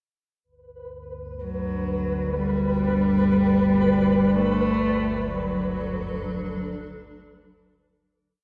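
Dark ambient drone at 62 BPM in G major, desolate and dark, with a chorused analog drone of sawtooth and pulse-wave tones settling low from 1.0 seconds while a flickering, grainy texture holds a single high note and a cloudy, blurred granular pad drifts through slowly shifting chords, both bathed in shimmer reverb. Up front, a woody, vibrato-laden bowed cello sings a free melody through tape echo from 1.4 to 6.8 seconds, over a harmony that moves from G to D over G at 4.3 seconds. The echo-heavy mix sits in a wet spring reverb, and the whole short piece fades out from 4.3 seconds.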